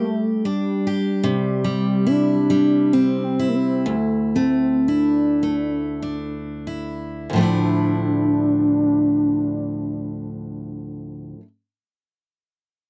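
Celtic folk in the manner of a slow air, this short excerpt from a longer piece moves in a rubato three-four, its mood mournful and haunting. A velvety synth lead carries the melody between G3 and D4, its smooth, sustained tone shaded with vibrato and a chorus effect. Beneath it, a picked steel-string acoustic guitar supplies the accompaniment, bright and full-bodied, sitting up front in the mix. The pace slows between 1.3 and 7.3 seconds, after which the opening section gives way to a second passage built on a D minor add nine chord. The sound is dry and close, in a 1970s studio style, with only a light touch of reverb around the two parts.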